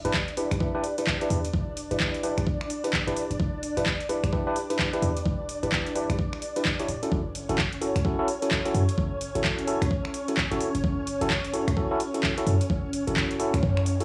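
A silky string machine holds sustained chords over a short, punchy 808-style bass from the opening, the strings colored by phaser, ensemble chorus, sidechain pumping and cassette tape grit as Em7 gives way to F#m7 at 7.1 seconds. A mellow tine electric piano plays up-front stabs through low-pass filtering and analog delay, while an overdriven knocking kick and a garage kit of finger snaps, handclaps and metallic hi-hats drive a swung, bouncy two-step garage groove with a soulful feel. Light reverb and a homespun cassette character frame this cut from a longer piece, and a very quiet noise sweep enters at 13.6 seconds.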